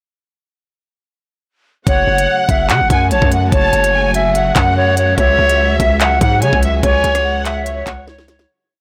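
Dark and tense, this half-time drill piece opens its hook at 1.9 seconds with a looping, vibrato-laden flute melody up front, a sparse violin-section counter-melody touched with digital delay, and a lush bowed string pad, all driven by a knocking drill kit with skipping hats, handclaps and rim clicks, plus a heavy 808 bass whose long sliding sub notes follow the kick, in a dry, blown-out, overdriven mix that fades out from 6.8 seconds, with a closing drum fill at 8.1 seconds.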